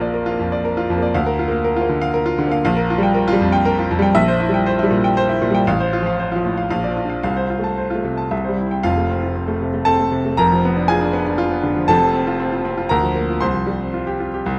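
In a flexible, rubato triple metre, this short passage from a longer classical virtuoso piano study feels sparkling and heroic, with a solo grand piano ranging from deep bass to bright upper notes. The piano sounds clear, intimate and up front, with audible action noise. The dark production carries a light reverb, and at 8.8 seconds the music moves into a new section whose harmony briefly darkens through a diminished chord before settling onto a suspended chord at the close.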